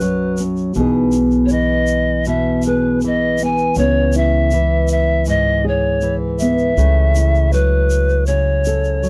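Acoustic folk for a duo or small band, pastoral and hopeful, moving at 80 BPM in a straight 4/4 in E major, cut from a longer piece. A breathy, reedy bamboo pan flute carries the melody up front with vibrato and a tongued chiff, over a dark, thumb-plucked nylon-string guitar, a woody, thumpy pizzicato upright bass on gut strings, and a grainy, bright tube shaker, all playing throughout the 9.1 seconds. The chords move from Badd9 through Emaj7/B and C#m7 to F#m7/C#, captured in a dry, close 1970s-style studio sound with light reverb.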